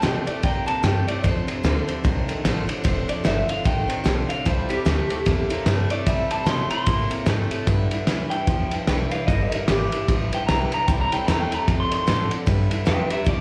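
This live club recording comes through the venue's PA with a moderate room reverb, giving a short excerpt of an upbeat, retro rockabilly number at 149 BPM in 4/4 with a swung eighth-note feel in C major. The cloth-damped drum kit sits up front, its thuddy, muffled sound combining a fat snare, tight kick and dark ride cymbal in a gritty, lo-fi, saturated tone with a rolled-off top. An upright bass plays pizzicato underneath with a woody, dark character. Leading the band, an electric guitar through a small old amp takes a solo across the full 13.4 seconds, its bright, slightly broken-up tone soaked in plate reverb, slapback and tape echo. Behind it, a clean, twangy electric guitar carries a low riff through spring reverb and slapback, while a boxy parlour-style steel-string acoustic guitar picks out accompaniment with plate reverb and slapback. The harmony moves between C6, F6 and G6 chords.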